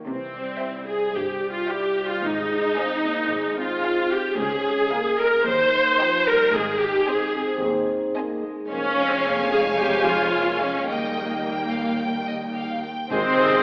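Graceful and cheerful yet dramatic, this fast romantic orchestral passage at 111 BPM shifts from F minor into Ab major. A lush violin section carries the melody over a distant, even second violin line, with expressive violas up front using portamento, and soft-attack cellos and woody double basses in the background, while a dark, punchy French horn section holds chords and a ringing concert harp plays arpeggios. At 13.1 s mellow flutes, an oboe, a roomy clarinet, a barely audible trombone section, trumpet stabs, a very quiet tuba and hard-mallet timpani enter together, all heard through an AM radio sound in a wet concert hall reverb.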